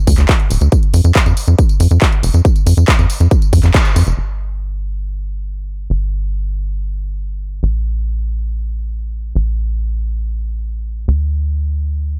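Driving and emotional, this uplifting trance excerpt moves at 139 BPM in a straight 4/4, cut from a longer piece. A punchy, layered electronic kick sits up front alongside a big-room dance kit of crash cymbal, handclaps, hi-hat and tambourine, whose hats, percussion and cymbals are low-pass filtered and pump with sidechain compression. Underneath, a tight sequencer bass runs from D1 to F2 with a sawtooth and square-wave tone, a fast-attack filter pluck that decays, and a mellow edge thickened by tube saturation and sidechain pumping. The full band hits an accent at 3.7 seconds, and after the drums drop out by 4.3 seconds the up-front bass carries on alone until 12.2 seconds. The mix is dry, with little reverb.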